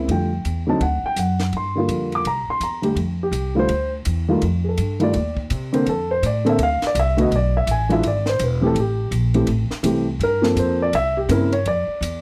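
Sophisticated and warm, this fragment of a swinging jazz piano trio moves at 166 BPM in F major. A dark, mellow baby grand sits up front with audible action noise and short sustain, taking a solo from 3.0 seconds over changes such as Bbmaj9, C7b9 and a closing F5. A woody, thumpy pizzicato upright bass on gut strings and a compact cocktail kit of hi-hat, punchy kick, high-tuned snare and dark ride cymbal round out the dry, close 1970s-style studio sound.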